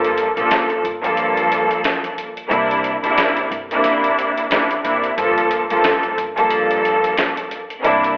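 Tough and gritty, this 8.2-second cut from a longer boom-bap hip-hop piece moves at 90 BPM in G dorian with a swung 16th-note feel, cycling from Gm9 to C9 and back. A lush, bowed string section sits up front with rich vibrato and a smooth top, colored by cassette tape and filtering, while a woody, thumpy pizzicato upright bass stays in the background. Compressed, sampler-style hi-hat and a medium-tuned snare sound re-recorded in a large room, and the whole mix carries a telephone-like tone with light reverb.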